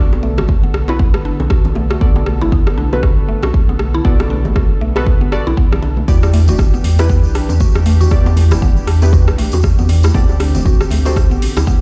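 Heard as if through a big sound system in a bare stone room, this hypnotic, earthy afro house excerpt moves at 118 BPM in B phrygian with swung sixteenths, shifting from Bm7 to Em7 at 6.1 seconds and then to D7sus4. A deep, up-front electronic kick and a round, tube-saturated sub bass anchor an overdriven deep house kit with metallic hi-hats and rim clicks, while soft-handed congas and tight, high-tuned bongos sit in the background and a jingly tambourine joins at 6.1 seconds. Above them, a woody FM mallet pluck arpeggiates through chorus, phaser, 12-bit sampler grit and tape echo, a dark, nasal chord stab shares that grit and echo, and a smooth, detuned analog pad holds chords in the background, with pad, pluck, stab and bass all pumping to the sidechain.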